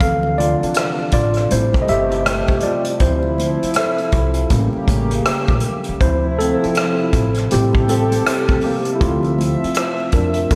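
An 80 BPM groove in 4/4 with a 16th-note swing sets up this short, introspective and sultry neo-soul R&B passage in D minor, cut from a longer piece. A mellow tine electric piano takes the lead as a solo across the full 10.6 seconds, its worn, slightly out-of-tune tone lightly overdriven through built-in speakers, with a slapback echo, sitting up front. Beneath it, a chorused pulse-width pad holds shimmering, detuned retro chords with a slow attack. A woody, thumpy upright bass on gut strings is plucked in a dark low register. The acoustic drum kit uses bundle sticks on hi-hat and rim click with a punchy kick, while very quiet, high-tuned congas with a thin, bright skin sit distant in a large room. The harmony circles Dm9 and Am7 with a brief A7b9 at 4.5 seconds, and a lush hall reverb gives the whole track a big arena sound.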